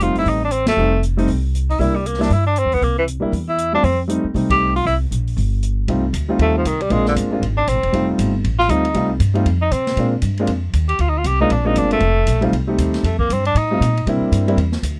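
A dry, close 1970s-style studio sound frames this relaxed, sophisticated small-group swing excerpt, where a breathy tenor saxophone with vibrato carries the melody and takes a solo from 5.9 seconds, a warm concert grand piano accompanies, a woody pizzicato upright bass holds the low end, and an open drum kit with dark cymbals and a boomy kick keeps time, the band hitting accents at 0.6 and 4.5 seconds.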